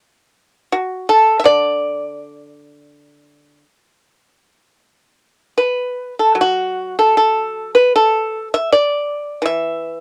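This is a piece of Chinese traditional music for solo plucked strings, serene and pastoral in mood, taken from a longer work. The pipa enters at 0.7 seconds and carries the music alone, played with fingerpicks across a range from D3 to E5 in the D gong mode. The pulse moves freely in rubato, hovering around 74-84 BPM in 4/4. The instrument sounds dry, percussive and up front, with the character of cassette tape around its acoustic tone. A new section begins at 6.4 seconds, and the whole is heard through light reverb in an intimate home recording on cassette.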